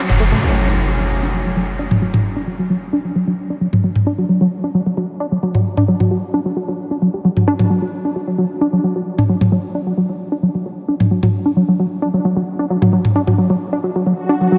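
A tight, nasal sequenced synth riff drives this industrial, hypnotic slice of peak-time techno at 132 BPM in a straight 4/4, its detuned sawtooth and pulse-wave tones shaped with a filter pluck and a fast attack, chorus, tube saturation and a diffuse ambient delay as it runs up front from 0.1 to 14.6 seconds. An eerie, metallic drone built from FM, triangle and ring-modulated tones sounds only briefly at the very start, sitting in the background with chorus and its own reverb. The electronic drum kit, layered and up front with smooth hi-hats and toms under a studio reverb, enters just after a band accent at the top, drops in a quick fill and then plays until 13.4 seconds. Electronic sound effects frame the passage, with an impact from 0.4 to 2.2 seconds and a swell closing in at 14.2 seconds. The whole mix is dreamy and soaked in a huge ambient reverb, giving this cut from a longer piece a cavernous, trance-like haze.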